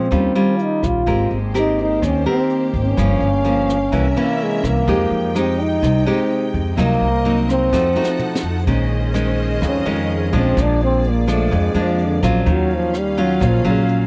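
A breathy, whispered trombone carries the melody of this smooth, melancholic bossa nova excerpt at 126 BPM in F minor, its dark tone and light vibrato turning into a solo when the music moves to Bb minor at 8.7 seconds. Fingerpicked nylon-string guitar with audible finger squeak and woody pizzicato upright bass sit up front, while a brushed drum kit with a high-tuned snare and boomy kick plays a fill just before the shift, and a lush bowed string section holds sustained chords from 1.1 seconds. Chords such as Eb9, Abmaj9 and C7b9 colour the harmony, and the dry, close 1970s-style studio sound keeps the performance intimate.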